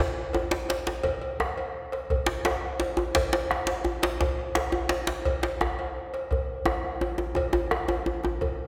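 A 12/8 pulse at 114 BPM, counted in dotted quarters and played with a straight feel, drives this short fragment of West African traditional drumming, cut from a longer piece. The mood is festive and driving, with the cowbell and both djembes entering at about 0.3 seconds. A metallic cowbell rings over a round bombo that joins at 0.5 seconds and anchors the low end. Two djembes share the hand-drum work: a medium-tuned one sits up front, close and dry, while a tight, cracking second djembe, played with soft hands, stays in the background and drops out at 8.4 seconds. The cowbell and bombo carry a live-room character, and the whole recording sits in a wet concert hall reverb with a long 2.4-second tail.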